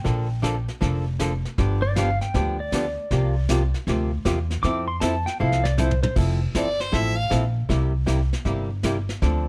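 Cheerful, playful western swing country with a swung feel, cut from a longer piece, opens on a clean, fingerpicked pedal steel guitar solo with slide and volume swells, over a dark, hollow-body archtop guitar, a woody, thumpy pizzicato upright bass and a vintage brush kit with dark cymbals and a punchy kick. A drum fill closes the steel's turn, which ends at 6.2 seconds, and a biting, intensely bowed fiddle with light vibrato then steps up front briefly at 6.6 seconds. Under light reverb, the bass and archtop stay close, while the drums sit softer in a small room with a rolled-off top.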